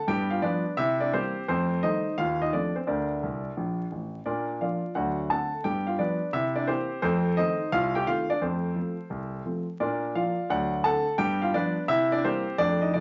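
Exuberant and swinging, this short stride piano excerpt, cut from a longer piece, bounces along in a brisk 4/4 with a swung eighth-note lilt. A lone grand piano carries everything from start to finish, its tone warm and up front, with short sustain that keeps each note crisp and buoyant across a span from A1 up to A5. The harmony rolls through circling dominant sevenths, G7, C7 and F7 leading home to Bb, and a piano fill at 3.2 seconds rounds off the first phrase before the second begins at 4.3 seconds. A wet studio reverb lends the room some bloom. Vinyl crackle and a dulled top end give the sound a vintage, record-player patina.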